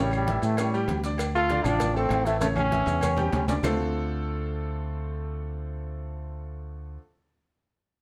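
A distant, roomy trombone leads this danceable, passionate salsa excerpt, its pop-style solo line sitting up front with a slapback echo before it stops at 3.6 s. Beneath it, a brilliant, woody upright piano with an open sound supplies the accompaniment, while a dark, round fingered electric bass played direct holds down the low end, both prominent in the mix over a moving A7 and Dm7 progression. The background percussion is lively: ringing, low-tuned congas recorded close; tight, high-tuned cowbell and bongos struck with hard hands in a small room; ringing metal-shell agogo bells and timbales with a vintage, band-limited character; very quiet claves; and grainy, mellow maracas. A drum fill arrives at 2.4 s, and the percussion drops out at 3.7 s, leaving piano and bass to carry the next section on their own. Moderate studio reverb gives the whole a lively sense of space.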